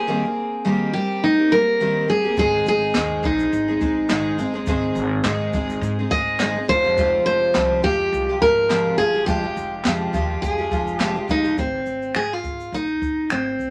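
A picked steel-string acoustic guitar carries the melody up front in this carefree, heartfelt acoustic pop excerpt, its tone marked by finger squeak and an auditorium-like presence. Beneath it, a shimmering, octave-doubled twelve-string acoustic guitar plays the accompaniment from the start, dropping out at 11.6 seconds as the passage moves into a new section. At 2.4 seconds a woody, thumpy upright bass with gut strings and a jazz kit played with brushes enter together, the kit bringing a high-tuned snare, punchy kick, shaker and finger snaps in an airy, polished studio room. Crisp, vintage-sounding group handclaps sit in the background from 3.0 seconds, lending a lightly swung groove extra lift. The chords move from Eb6 to Ab, then to Fmadd9 and back to Ab, all set in moderate studio reverb.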